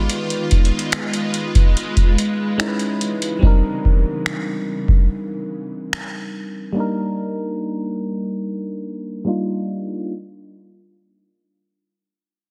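A dense, heavily limited modern master with light digital reverb frames this smooth, dreamy contemporary R&B fragment, cut from a longer piece and shaped throughout by a filter sweep. Up front, a glassy FM electric piano carries the accompaniment, its bell-like attack and decaying notes thickened by chorus and a faint noise layer. Beneath it, a cloudy granular pad holds sustained chords with a slow attack, a long release and its own reverb, sounding blurred, detuned and evolving before it ends at 3.4 seconds. A booming analog drum machine, re-recorded in a large room, sits prominently with a deep kick, metallic hi-hats and finger snaps, roughened by 12-bit sampler grit and soft clipping until it stops at 6.1 seconds. The harmony drifts from Abm6 through Dbm9 and Cm9 before resting on Ebmaj7.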